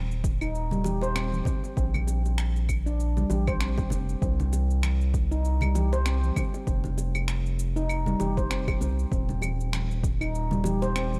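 Mystical and meditative, this short organic downtempo piece moves at 98 BPM in 4/4 with a gentle 16th-note swing, cut from a longer work. A round, deep analog bass opens at 0.0 seconds and sits up front, its mellow, wave-folded tone pumping under sidechain compression, and a punchy electronic kick drum enters at 0.2 seconds. A ringing handpan with sharp finger strokes spins bright, airy arpeggios through a digital delay, joining at 0.4 seconds. Layered electronic shaker, claves and finger snaps, re-recorded in a small room, add a steady patter, while acoustic congas and bongos murmur in the background from 0.7 seconds. The harmony drifts from Eb6 through Bbsus2, a chordless stretch and F5 before returning to Eb6, all in a dark, dry production with a faint mains hum beneath it.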